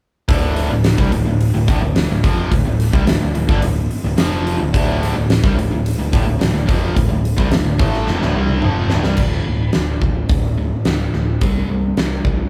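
A straight 4/4 groove at 108 BPM drives this gritty, swaggering classic rock cut from a longer piece in D minor, played by a band live in one room with light reverb. A huge acoustic arena kit sits up front with a fat snare, punchy kick, bright cymbals and a pumping hall sound, alongside a cranked stack guitar whose bright, overdriven riff rings out over a sludgy, warm distorted guitar in the background and a growly, direct picked electric bass. A drum fill at 8.1 seconds closes the Dm riff. The stack guitar stops at 9.2 seconds as the remaining parts shift to D5 and then C5.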